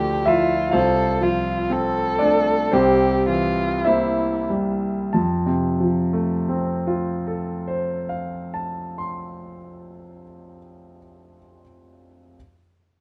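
Tender and lyrical, this short cut from a longer romantic classical piece pairs a single violin with a concert grand piano in F major, moving in 4/4 at a slow, rubato pace of 45 to 67 BPM. The bowed violin carries the melody in a modest range from E4 to A4, its tone dark and woody with vibrato and a smooth top, placed up front. It sings only until 4.5 seconds, while the piano accompaniment spans C2 to C6 and continues to 12.4 seconds, sounding clear and smooth with a deep bass and a vintage character. The opening phrase slows as it passes from D minor through F over C to a C7 chord, before the next section settles onto F at 5.1 seconds. A moderate studio reverb of about 0.6 seconds surrounds the duo.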